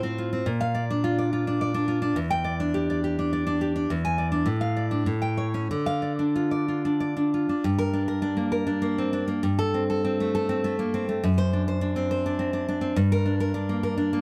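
Romantic solo classical guitar in 3/4, intimate and wistful, moving with a rubato feel at around 91-109 BPM in D minor before shifting to G minor at 7.6 s. The fingerpicked nylon-string guitar sits up front with a bright, fresh-stringed tone and audible finger squeak, ranging from E2 to G#5 through chords such as Em7, E7 and Dm/A before settling on Gm, Gsus24 and D7/F#. Moderate studio reverb gives the guitar a modest sense of room in this short cut from a longer piece.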